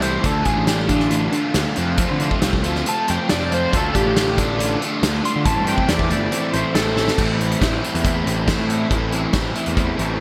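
Bright digital production in the manner of the 1980s wraps this indie rock fragment in a lush hall reverb and studio ambience, giving it a restless yet cool mood. A gritty, screaming synth lead carries the melody from the start until 7.2 seconds, its sawtooth-and-square tone distorted and bright, with chorus, phaser and vibrato giving it a guitar-like edge. Beneath it, a compressed overdriven electric guitar plays a riff through analog chorus and delay, while a hollow-body guitar, overdriven and set in the background with phaser, plays a second riff. A growly fuzz bass, direct and amped, anchors the low end, and a loose acoustic kit sits up front with a punchy kick, a medium-tuned snare and dark cymbals, rolling into a fill at 7.0 seconds. The harmony moves through Dm, F and Am7 before settling on Am as the lead drops out and the guitars and bass carry on until 10.2 seconds, with the drums stopping just before at 10.1 seconds.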